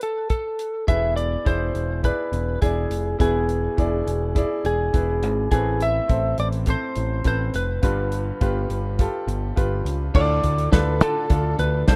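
A lightly driven, slightly broken-up lead guitar carries the melody up front from the start of this dramatic, bittersweet piano-driven pop excerpt at 104 BPM, joined by a dry, damped 70s drum kit with dark cymbals and a tight kick. At 0.9 seconds a bright, woody upright piano and an overdriven picked electric bass come in as the chords move from E through Amadd9 and G7. At 10.1 seconds a very quiet, lush symphonic string section adds bowed sustained chords as the harmony turns to Dm, all within the small-room feel of a rough home demo.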